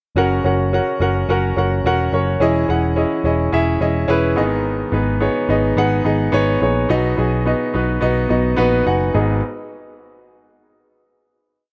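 Bathed in a moderate plate reverb, this short, earnest piano-driven pop piece in G# minor moves at a driving 107 BPM in straight 4/4. A bright, brilliant concert grand sits up front playing polished eighth-note chords in drop-2 voicings over F#, C#madd9/E, G#m and B, while a dark, round, foam-muted vintage electric bass pushes steady eighths beneath it. The piano adds a brief fill at 8.0 seconds before both settle on a closing G#m chord at 9.1 seconds.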